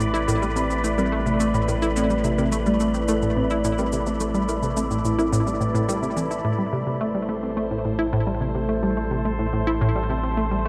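Cosmic and expansive, this excerpt of ambient, sequencer-driven space music moves at 107 BPM in A minor, with a bright, detuned analog pluck riff up front over a deep, round analog bass and a morphing, warbling wavetable pad treated with phaser, all bathed in a huge reverb with an 8.4-second tail. For the opening stretch a soft, dark triangle-toned pluck plays arpeggios through chorus and delay in the background, alongside tape-warm cabasa and bongos with delay and an airy, breathy wind-like noise texture. Those three parts drop out around 6.4 seconds as the harmony shifts from Amadd9 to A minor, leaving the riff, pad and bass to carry on.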